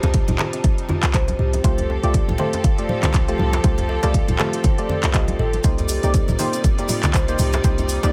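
A deep, up-front electronic kick drives this short afro house excerpt, giving it a driving, spiritual pulse with a swung groove. Beneath it, a boomy 808-style bass with a sine core and a noise layer pumps against the kick, while an afro-pop kit adds handclaps, smooth hi-hats and toms in a small room. Bright, damped congas sit in the background, a very quiet, close djembe adds low weight, and a grainy cabasa joins at 5.6 seconds. A woody, hollow-sounding kalimba rings out thumb-plucked arpeggios trailed by dub echo, framed by a distant, intense symphonic string section holding sustained bowed chords with light vibrato. From 1.6 seconds a dark, soft chord stab blending triangle, sawtooth and sine tones enters with chorus, a filter sweep and dub echo, moving the harmony from C minor to F add9 and then to C minor 7 at 5.6 seconds.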